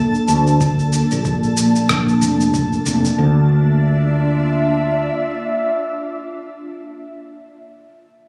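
A woody, growly fretless electric bass stands out up front in this mystical, meditative organic downtempo excerpt in D minor at 93 BPM with a swung 16th feel, beneath an ethereal, airy pad of detuned sustained chords with chorus, phaser and sidechain pumping, a twinkling granular shimmer that drops out at 3.2 seconds, and gritty, tape-toned sampled kick, shaker and rim click, all set in a lush hall reverb with a phone-in-the-room quality as the harmony moves from Bbmaj7 to Dmadd9.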